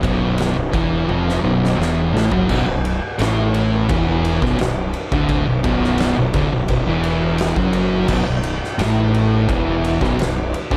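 Stoner and doom metal in B minor at a slow, heavy 86 BPM, this ominous excerpt opens on a B5 chord. An up-front, oversized low-tuned acoustic drum kit stands out with a boomy kick, fat snare, dusky cymbals and gritty saturation in a big, pumping room, and it plays a drum fill from 1.1 to 2.5 s as the harmony settles on Bm. Two dark, picked fuzz guitars grind out the riff in the background over a punchy, overdriven fingered fuzz bass, a very quiet double-tracked sludgy guitar joins at 8.1 s, and a light reverb sits behind the parts.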